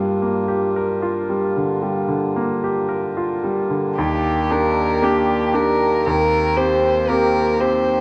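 Reflective and fragile, this short neoclassical passage for piano and strings is cut from a longer piece and moves at a slow 57 BPM in 4/4, with a loose, rubato feel. A bright concert grand piano carries the accompaniment from the start, its brilliant tone sitting up front over a deep bass that reaches down to Eb2. Throughout, a pedal harmonium holds sustained chords in a reedy, breathing voice, mellow and slightly boxy, set a little further back. At 4.0 seconds a single bowed violin enters with the melody, its smooth, even tone colored by vibrato and placed up front alongside the piano. The harmony drifts from Gm7 to Ebmaj7 and then to Cm7/Eb at 6.1 seconds, all within a light studio reverb.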